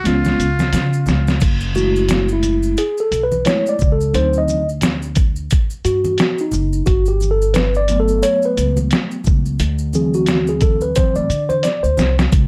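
Jazz-hop with a cool, mellow swing, cut from a longer piece, where a buzzy, metal-muted trumpet with light vibrato voices a brief melody that stops at 1.1 seconds, over a lo-fi sampler-style kit with a thumpy kick and 12-bit grit, dark woody pizzicato upright bass, and soft maracas and congas. From 1.4 seconds the clean tine electric piano, heard through its built-in speakers, takes a solo across chords moving from F#m7 through D7b9 and Gmaj9 to D9. Drum fills open the piece and return near 11.6 seconds, all set in light reverb.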